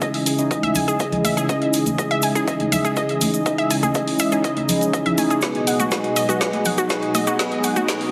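This progressive house build-up moves at 122 BPM in a straight 4/4, expansive and emotional in mood, shifting from C#madd9 to G#m7 at 5.4 seconds. A lush, airy unison pad holds sustained chords with chorus and sidechain pumping, while a bright, detuned sawtooth pluck sits up front playing arpeggios through digital delay. A glossy, retro chorused polysynth adds mellow pulse-wave stabs, also pumping and echoed, and filter sweeps run across the synth pad and polysynth for the full length. Underneath, a punchy layered electronic kick and a deep house kit with a woody snare and dark hats drive the groove, joined by a grainy cabasa and close, bright congas in the background, the congas entering at 0.6 seconds. A drum fill and a barely audible riser arrive at 5.4 seconds, all set in a moderate digital room reverb with a heavily compressed, radio-like sheen.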